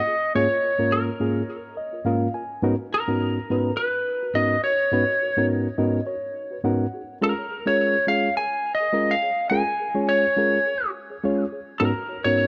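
A dark production with light reverb frames this slick, funky jazz excerpt at 105 BPM in G# dorian, where an up-front, twangy, slightly broken-up lead guitar carries the melody from A#4 to G#5 over a reedy, clean electric piano that comps across its range, adds fills at 1.5 and 5.5 seconds, and moves through G#sus4, G#m11 and C#6/G# chords with a light sixteenth-note swing.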